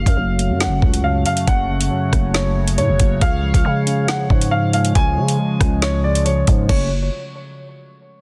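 A drill drum kit rides a half-time feel at 138 BPM, its knocking kick, woody snare, metallic hats and occasional rim clicks and crashes sitting up front, while a growling, buzzy 808-style bass with a fast attack anchors the low end in F# harmonic minor. Over it, a warm upright piano carries a short, delayed melody high in the register, a mellow, clean tine electric piano fills out the harmony, and a quieter sweeping pad (detuned, resonant and evolving, with chorus and phaser) sustains the chords as they move from F#m to C# at 3.2 seconds and back at 6.7 seconds. The tense, menacing fragment, cut from a longer track, is dry, dense and heavily limited.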